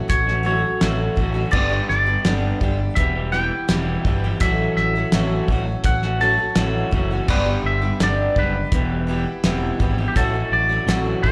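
Folk rock with a heartland rock drive, this short cut from a longer piece carries a hopeful, open-road mood over a straight, steady 4/4 feel. A clean, twangy electric guitar carries the melody above a picked twelve-string acoustic guitar that shimmers with octave doubling. A second electric guitar, slightly broken-up through a small old amp, plays a riff, and all three guitars share a slapback echo. At 0.1 seconds a fretless electric bass enters with a round, dark, direct tone sitting up front, together with a cloth-damped drum kit whose thuddy tight kick, fat snare, hi-hat, dusky crash cymbal and rolled-off top give the groove a warm weight. The chords cycle through A6, G and Em, and the recording sounds like a live gig heard through the venue's PA, with club reverb around the players.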